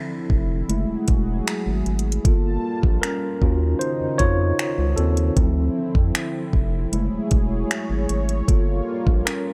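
A mellow tine electric piano leads this short contemporary R&B cut, its clean tone sounding as if heard through built-in speakers and sitting up front for the full 9.5 seconds. Set at 77 BPM in a straight 4/4, the mood is late-night and longing, moving through minor-ninth chords from Dm9 to F#m9, Gm9 and Ebm9 before circling back. Beneath it, a round analog bass enters at 0.3 seconds, deep and dark, blending square and sine tones with a wave-folded, evolving edge and a fast attack. The electronic drum kit, also arriving at 0.3 seconds, is produced and forward, with a knocking kick, metallic hi-hats and finger snaps. A smooth sawtooth-and-triangle pad with a sub octave fills the background with slow-attack, long-release chords, colored by chorus and sidechain pumping. The sound is dry and close, with little reverb.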